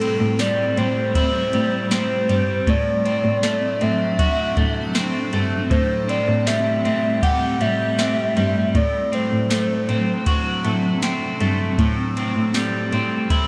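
A warbling square-and-sawtooth lead with chorus and delay sings a nostalgic melody over a blurred, evolving granular pad, a slightly broken-up electric guitar picking lush, chorused arpeggios, a bowed cello holding the bass with light vibrato, and a soft vintage rhythm box of deep kick, crisp snare, ride cymbal and tambourine. This hazy, melancholic dream pop fragment moves at 79 BPM in a straight 4/4 in A dorian, drifting between Am7 and D9 or D7 chords inside a moderate concert hall reverb. The lead falls away at 10.7 seconds, leaving the pad, guitar, cello and drums to carry on until 13.5 seconds.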